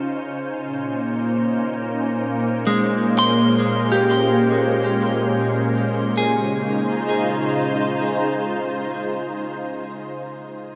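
A pure, sine-like organ pad sits up front, fading in over the first 6.2 seconds with ensemble chorus and shimmer reverb on slow-attack chords that move from Dbmaj7 to Bbm7 and back in Db lydian, while a bright, twangy electric guitar on the edge of break-up enters at 2.7 seconds with picked arpeggios through spring reverb, diffuse delay and shimmer, all within a huge, washed-out reverberant space that gives this free-time ambient excerpt a weightless, serene calm.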